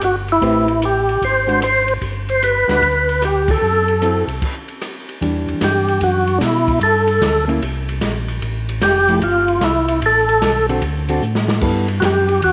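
Soul jazz organ trio music with a swinging, bluesy mood, moving at 150 BPM in 4/4 with a swung eighth-note feel, starting in G major and shifting to E minor at 5.2 seconds. Up front, a fat, percussive tonewheel organ carries the melody with audible key click, light overdrive, chorus vibrato and a slow rotary speaker, while a second, mellow and round tonewheel organ voice holds down the bass line with its own overdrive, vibrato and slow rotary. An acoustic jazz kit in a small room sits underneath with dark cymbals, a medium-tuned snare and a boomy kick, and a clean, fingered hollow-body electric guitar comps from 0.4 to 11.9 seconds. The band hits an accent at 3.4 seconds and drops into a stop before the minor-key section, where the chords wander through rich extended colors toward a D7 and a closing G69, and the drums play a fill just before that last change. The whole mix sits in a moderate echo chamber reverb, and the recording is a cut from a longer piece.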